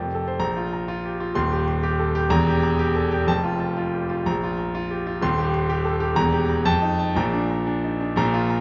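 A sparkling, heroic classical virtuoso piano study in Bb major, moving at 117-129 BPM in a rubato 2/4, this short cut from a longer piece features a solo concert grand piano that sounds clear, up front and polished, spanning Eb1 to C6 with deep bass, long sustain and audible action noise. It moves through a Bb to Cm/Eb, Edim and F progression, then repeats Bb, Cm/Eb and Edim before passing through F7 at 6.7 seconds to settle on Bb around 7.2 seconds, all bathed in a dark production and a wet recital-hall reverb with a 1.8-second decay.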